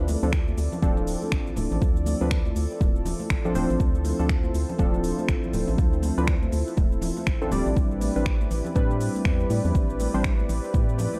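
Deep house with a hypnotic, moody pull and a swung 16th-note feel, heard in an excerpt of a longer piece that rests on Dm7 before moving to Am11 at 7.8 s. A smooth, detuned sawtooth pad holds slow-attack chords with chorus and sidechain pumping. Round analog key stabs carry chorus, gritty 12-bit sampler texture, tape echo and a filter sweep, while a hollow, organ-like FM bass adds dark, percussive notes that also pump. A kit of cabasa, finger snaps and silky hi-hats in studio reverb enters at 0.1 s alongside ringing, saturated congas and bongos struck with hard hands in the background. A deep, layered electronic kick then anchors the groove from 0.3 s, all set in a dusky, warm digital ambience.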